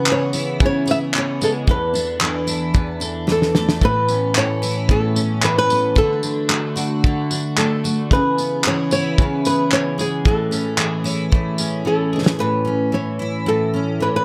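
A fingerpicked flamenco guitar carries the melody up front, its notes trailed by a delay that gives this easy-going, heartfelt acoustic pop piece a gentle shimmer. Beneath it, a double-tracked steel-string acoustic guitar picks a full-bodied accompaniment in the low and middle register, with the rounded weight of a dreadnought. A bright, twangy twelve-string electric guitar plays clean, compressed arpeggios further back in the mix until 12.9 seconds. The cloth-damped drum kit sits close and thuddy, with a fat snare, tight kick, handclaps and tambourine under a rolled-off top, and it adds short fills before dropping out at 12.4 seconds. The straight 4/4 groove moves through chords such as C#m7, E7sus4, Aadd9, D and Amaj7, all set in a small, intimate room. This passage is cut from a longer piece, and the two acoustic guitars carry on together until it ends at 14.2 seconds.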